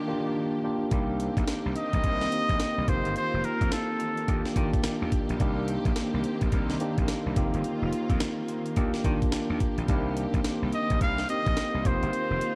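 A clear, forceful trumpet with scooped notes and light vibrato carries the melody in this bouncy, slick new jack swing excerpt in C minor at 107 BPM with a swung sixteenth feel, entering at 1.8 seconds and returning at 10.7 seconds. After a brief opening break of electric piano and strings, a compressed, sampler-style breakbeat kit with a thumpy kick and high-tuned snare arrives at 0.9 seconds alongside a punchy, overdriven slap bass. Meanwhile, a clean tine electric piano through a combo amp accompanies and a soft, bowed string section holds sustained chords over a cycle of Ebmaj7, Cm7 and F7sus4, all in a dark production with a moderate echo chamber reverb and the drums and trumpet up front.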